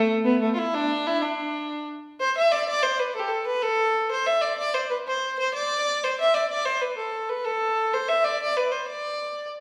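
A lone bowed fiddle carries this medieval dance, its rich, smooth tone with light vibrato sitting up front yet with a distant quality, played evenly by one player across a range from A3 to E5. The mood is ancient and mysterious, moving at 125 BPM in dotted quarters in a straight 6/8, tuned to A4 = 443 Hz, with a shift into a new section at 2.2 seconds. A wet recital hall reverb with a 1.4-second decay surrounds the fiddle, giving the feel of a church or concert hall in this short excerpt cut from a longer piece.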